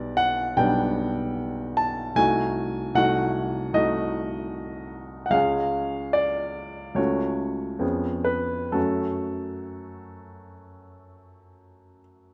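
Bittersweet and passionate, this romantic character piece for solo piano unfolds in F# minor at an unhurried 62-78 BPM in 4/4, with a freely breathing rubato feel. A clear baby grand carries everything alone for the full 12.3 seconds, spanning from B1 up to A5 and sitting polished and up front in the sound. The harmony moves from G/B through a Cdim7 at 2.2 seconds and onto C# before settling through F#m/C# and C#7/E# to arrive home on F#m at 8.8 seconds. A moderate scoring stage reverb gives the instrument a sense of space around its present, clear tone. Cut from a longer piece, this short passage feels like a single heartfelt phrase reaching toward resolution.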